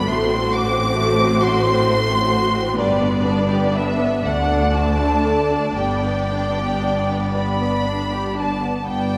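This is a slow, romantic classical movement for string orchestra in G major and 6/8, moving at roughly 37-45 BPM in dotted quarters with a rubato feel and a serene, warm mood. The violins carry the melody between D5 and D6 with a focused, up-front tone and vibrato, while a second violin line and the violas fill in smooth, even, lush inner parts close to the listener. Beneath them, the cellos and a bright, intense double bass section share the bass from a more distant position, all bowed with vibrato. All five sections play together throughout the 9.2 second excerpt, which is cut from a longer piece. The harmony opens on F#dim over A before settling through G, D and back to G, and a concert hall reverb with a 2.6 second decay adds a wet, spacious glow.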